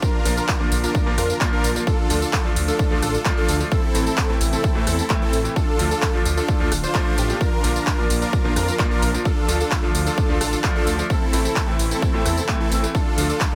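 Bathed in digital ambience, this euphoric, emotional stretch of festival progressive house, cut from a longer piece, centres on a huge, detuned supersaw riff that pumps with sidechain and trails delay, while a punchy, overdriven electronic kick sits up front. A layered big-room kit adds metallic hi-hats, handclaps, rim clicks and tambourine, alongside a menacing, beating saw bass, a brilliant grand piano with audible action noise, and a bold unison lead whose arpeggios carry ensemble chorus and delay in the background. Beneath it all, a lush, airy pad holds very quiet sustained chords through a Bb, Dm, Am, Dm cycle.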